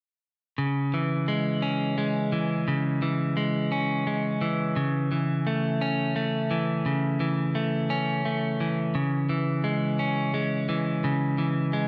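A clean, picked electric guitar sits up front, its compressed arpeggios and slapback echo unfolding in a brooding, melancholic rock waltz from 0.6 to 11.9 seconds, wrapped in a moderate plate reverb and a dark, warm production as the harmony moves from C#m to A/C# and back.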